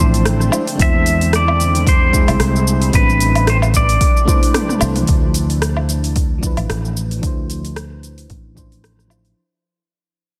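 Sunset chillout in D dorian at 112 BPM, relaxed and warm, with a 16th-note swing that gives the 4/4 groove an easy lilt. A bright, clean pedal steel guitar carries the melody through the first 4.8 seconds, its fingerpicked slide lines compressed and bathed in tape echo, while a shimmering ambient pad holds ethereal, detuned chords with chorus and reverb in the background until 5.1 seconds. A mellow FM electric piano plays soft, round, warbling accompaniment with a vintage, dark tone, chorus, low-pass filtering and digital delay, and a filter sweep runs across it from 5.1 seconds as the piece fades out. Underneath, a growly, up-front fretless electric bass sustains low notes, and a punchy, overdriven electronic kick joins at 0.8 seconds alongside a deep house kit of metallic hi-hats, cabasa, rim click, toms and woodblock, which plays a fill just before the fade. The harmony moves through lush extended chords, from Dm9 through Am11 and C69 back to Dm9, and the whole is captured in light reverb with a dense, heavily limited modern master.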